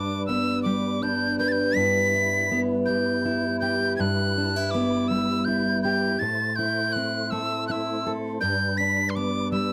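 Warm and hopeful, this short acoustic folk fragment moves in an unhurried 6/8 at 54 BPM, drifting from G through Em/G to Am and back to G at 8.4 seconds. An airy, bright tin whistle carries the melody up front, its tongued notes marked by chiff and vibrato, over a full-bodied, fingerpicked steel-string guitar with fresh strings. Behind them, a mellow, round tonewheel organ sits lower in the mix, holding sustained chords through a slow rotary speaker and chorus vibrato, all within a moderate studio reverb captured by close, detailed microphones.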